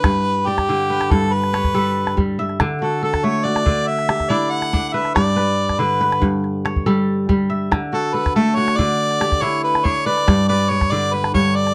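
West African traditional string and xylophone music in a joyful 12/8 at 94 BPM, where a clear, close-miked harmonica sings a pop-style solo melody with light vibrato and scooped notes over ringing, crisp fingerpicked kora arpeggios and a small, dry calabash, all moving between G and D in a dark, warm production with light reverb.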